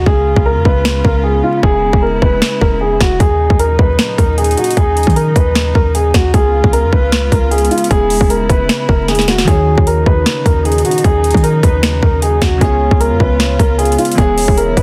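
A half-time trap groove drives this dark, melancholic hip hop excerpt, cut from a longer piece, with an electronic drum kit of hard-clipped kick, sharp snare, metallic hi-hats and finger snaps, overdriven and placed up front. Beneath it, a clean 808-style bass with a deep, boomy sine tone hits with a fast attack and decays into the low end. A dark, mellow baby grand piano carries the melody with long sustain, while a chamber string section holds bowed chords with light vibrato, sul tasto, in an intimate, close ensemble sound. The harmony circles through Db7, E6 and Ebm7, and after a break at the opening and a drum fill at 9.1 seconds, glassy, warbling digital keys with a vintage feel, a filter sweep and chorus slip into the background at 9.4 seconds. Vinyl crackle sits over a dense, heavily limited modern master.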